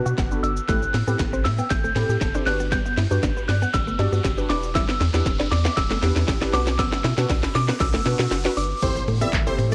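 Wrapped in the worn, warbly pitch drift of old cassette tape and a light digital reverb, this energetic, confident dance-pop clip at 118 BPM is one long build-up over Bm, Am7, Gmaj7 and Em7, with a house kit's punchy kick, cracking snare, claps, hi-hat and shaker playing a fill up front as a background riser climbs and a filter sweep opens. A crystalline FM bell carries the high melody over chorused, glassy wavetable plucks, a deep, round analog bass pumping to the sidechain, lush detuned unison-pluck arpeggios with tape echo, and a clean, direct-recorded electric guitar riff tucked behind. At 8.8 seconds an impact lands and huge, bright supersaw chords take over the melody.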